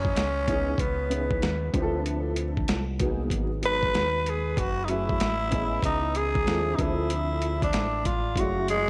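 A growling tenor saxophone leads this mellow, smoky jazz-hop clip, its raspy, breathy subtone and vibrato sitting up front with a trail of tape echo. A gritty boom bap sampler-style kit with a thumpy kick and overdriven crunch drives a swung hip hop groove under a round, deep fingered electric bass, while a woody upright piano with audible action noise and a chorus shimmer enters at 0.5 s to comp through minor ninth chords. The dreamy mix is soaked in plate reverb and laced with vinyl crackle.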